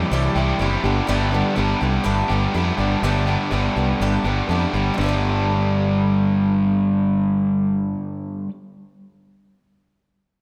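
Picked twelve-string acoustic guitar, overdriven semi-hollow guitar and fingered electric bass all start together in this short excerpt of hopeful, nostalgic folk rock and heartland rock, moving in a straight 4/4 at 123 BPM in G major over Cadd9 and Gadd9 chords. The double-tracked semi-hollow guitar carries an up-front overdriven riff, the boxy, shimmering twelve-string supplies octave-doubled accompaniment with a swing to it, and the direct, amped bass sits forward in the mix. Light reverb colours this rough home demo mix, and the bass stops at 7.9 seconds, just before the guitars finish.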